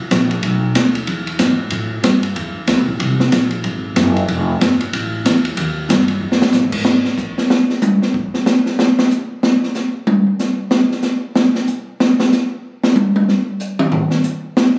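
A sultry, swinging big band jazz passage cut from a longer piece opens with a woody, pizzicato upright bass and an up-front drum kit of dark cymbals, high-tuned snare and boomy kick, until a drum fill at 6.2 seconds leads the kit into a solo from 6.9 seconds, all heard through a moderate echo-chamber reverb and captured on a phone in the room.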